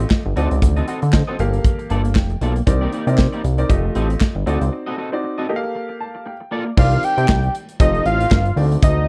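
A close, roomy studio sound frames this short, danceable cut of early-eighties boogie funk at 117 BPM in C dorian, with a lightly swung sixteenth feel and a late-night mood. Up-front acoustic drums with a punchy kick, handclaps, hi-hat and crash sit beside a thick, nasal analog bass, while an intimate baby grand with audible action noise adds fills and a twangy, slightly broken-up electric guitar with analog chorus plays a riff until 6.7 s. At 6.8 s a fat, detuned analog lead with vibrato, chorus and slapback echo takes the melody over chords moving through Cm9, F9 and D7b9.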